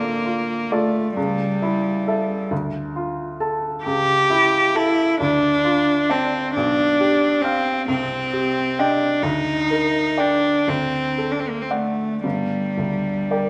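A bowed cello and a grand piano begin together in this solemn, elegiac romantic duo in G minor, cut from a longer piece and moving in a slow, rubato 6/8 at 36-46 BPM in dotted quarters. The single cello carries the melody up front in a clear, smooth, even voice with light vibrato, while the brilliant, open piano accompanies with short sustain, reaching from deep bass up into its upper register. Set in a moderate scoring-stage reverb, the harmony moves from D minor through A7 and G7 chords to C minor and a D7 before settling on G minor at 12.2 seconds.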